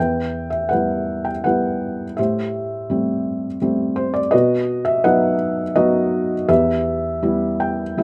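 A felt-muted upright piano plays alone, its muted, intimate tone sitting up front with audible action noise from the mechanism, in a short lyrical classical passage of cool, bittersweet character. The music moves in a rubato triple metre through a brief minor-key chord progression, reaching from low bass notes to the upper middle register. The close, detailed sound carries little reverb, and a small piano fill arrives at 7.2 seconds as this fragment of a longer piece ends.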